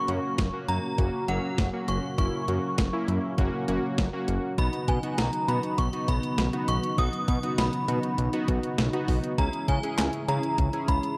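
An overdriven, 12-bit drum machine sits up front with a thumpy kick, medium-tuned snare, hi-hat and handclaps, joined by a fat, detuned sawtooth bass in this nostalgic, bright synth-pop excerpt cut from a longer piece. Above them, an inharmonic FM synth chime rings out the melody through ensemble chorus, phaser and analog delay, while airy, warbling analog keys and a vintage string machine on cellos, slow to swell in with a sub octave, fill out the chords. A lush hall reverb wraps the dark production, and the harmony moves from F# to Badd9 at 4.6 seconds and C#m at 9.4 seconds.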